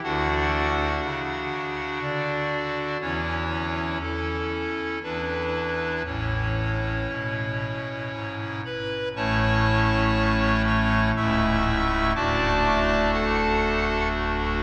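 Majestic and reverent, this short classical chorale-style passage cut from a longer piece has a solo pipe organ sounding a hollow clarinet reed stop with romantic voicing and tremulant, sitting up front in flexible, rubato triple time across a span from deep bass notes to a high treble, while a wet cathedral reverb with a 4.6-second decay places the listener further back in the room as the opening phrase returns at 9.2 seconds.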